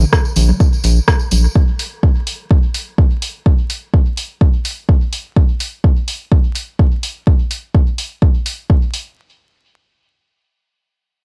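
A dry, gritty hardware sound with vinyl crackle wraps this cavernous, hazy dub techno fragment, cut from a longer piece in straight 4/4. It opens with a round, mellow analog bass whose deep square-and-sine tone is wave-folded and sidechain pumped, joined by electronic toms and congas set back in the background with dub echo and pumping of their own. A jingly, bright tambourine sits close and dry on top. A layered deep house kit of hi-hat and rim click and a tape-warm electronic kick enter at 0.1 s, both up front and re-recorded in a small room. Bass, toms, congas and tambourine all fall away by 1.5 s, leaving the kit and kick, which carry on until about 9.0 s.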